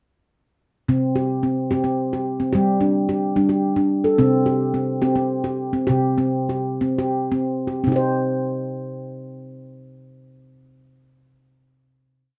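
The rhythm moves in a straight 6/8, its dotted-quarter pulse sitting between 54 and 73 BPM before the tempo slows from 4.2 to 7.9 seconds. This short, complete world piece in C minor has a meditative, hypnotic mood, carried by a solo handpan from 0.9 to 12.0 seconds across a range of C3 to C5. Played with soft fingertips, the nitrided steel rings with a mellow, airy tone, repeating an ostinato built on a dotted bass figure. The harmony rests on C5 and G5 before settling onto a final C minor chord at 7.9 seconds, which rings to the close. The instrument sits up front in a moderate booth ambience with a brief, tight reverb.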